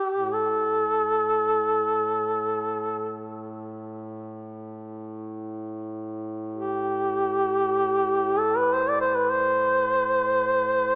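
This Caucasian folk lament unfolds in free time in A minor, tuned to A4 = 435 Hz, with a longing, mournful mood, and is cut from a longer piece. A warm, up-front duduk carries the melody between G4 and D5 with vibrato and scooped notes, while a second, mellow duduk with a smooth top holds a quieter A2 drone from 0.1 seconds. Both sit in a wet church reverb with a small-speaker sound, and the playing slows from 8.3 seconds to the cut at 11.0 seconds.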